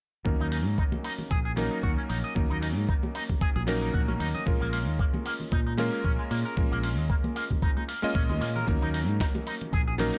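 A lightly swung 4/4 groove at 114 BPM anchors this sleek, cosmic nu-disco excerpt in Eb minor, where an up-front, thumpy electronic kick and a dusty, tape-warm sampler-style kit of hi-hat and medium-tuned snare sit over a round, punchy fingered electric bass, while a clear, clangy vintage electric grand piano pumps through a sidechain, low-pass filter and analog delay, a bright, twangy envelope-filtered electric guitar riff adds subtle chorus and delay, and damped, high-tuned congas sit in the background, all moving from Ebm7 to Bbm7 and back in a dry, gritty hardware recording.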